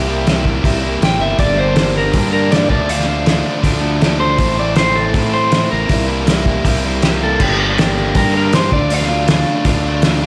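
Cool and moody, this short indie rock excerpt drives along in a straight 4/4, cut from a longer piece. A biting, bright overdriven guitar carries the riff up front, double-tracked and picked with a slapback echo, while a clean, warm electric guitar plays the melody above it until about 9.7 seconds. Underneath, a dark, round fingered bass adds fuzz and overdrive to the low end. The cloth-damped drum kit enters at 0.3 seconds with a thuddy, muffled character: a fat snare, tight kick, hi-hat and crash cymbal sit up front with a gritty, lo-fi saturation and a rolled-off top. The chords cycle through C7, Gm, Dm and Am before the opening passage returns at 7.4 seconds, all set in a wet hall reverb that gives the mix a big arena sound.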